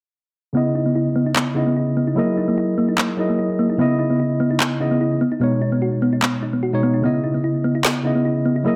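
A bright tine electric piano and a round, thumb-piano-like synth pluck open this dreamy, bittersweet future bass excerpt together at 0.5 seconds, set in C# dorian at 148 BPM with a half-time feel. The electric piano carries the accompaniment, clean and up front as if heard through built-in speakers, shaped by a low-pass filter and digital delay, while the FM pluck spins gentle, mellow arpeggios with a fast attack, short decay, a noise layer, chorus and its own delay. Both parts move under filter sweeps across the whole passage, lending the chords a shifting, hazy colour. At 1.4 seconds, electronic handclaps and a woody snare join, produced and forward in a small room reverb. The harmony moves from C#m9 to F#13, back to C#m9, then on to B69 before returning to C#m9, all wrapped in a light digital ambience.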